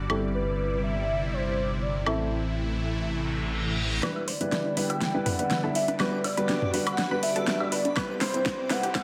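Progressive house with a driving, bittersweet mood, this excerpt opens on a lush supersaw pad holding sustained chords through a phaser, a rumbling detuned saw bass and dark, intimate baby grand stabs, with audible action noise, trailing dub echo, all three pumping against the sidechain. A velvety synth lead carries the melody with chorus and vibrato, while an up-front deep house kit supplies a fat snare, metallic hats and woodblock. A very quiet reverse cymbal rises from 3.2 s into the second section at 4.0 s, where a filter sweep moves across the piano and pad, a build-up and drum fill begin, and a round analog pluck adds quiet arpeggios. Background congas, toms and electronic woodblock join shortly after, along with a faint, dreamy granular texture swelling in reverse. An overdriven, knocking electronic kick finally lands at 8.0 s as the chords return to Cmaj7/G, all set in a moderate digital room reverb.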